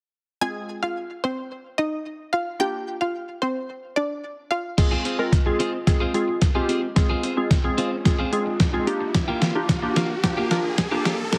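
Squeezed into a heavily compressed, high-passed radio sound with light reverb, this bittersweet, energetic dance-pop excerpt opens with a round, sawtooth analog pluck carrying the melody through chorus and digital delay over a crystalline, warbling wavetable pluck, both pumping with sidechain, before a bright, clean twelve-string electric guitar riff and a muffled, pitched-down trip hop sampler-style drum kit with a thumpy kick arrive at 4.8 s for a build-up and drum fill, joined at 6.9 s by an electronic riser in the background.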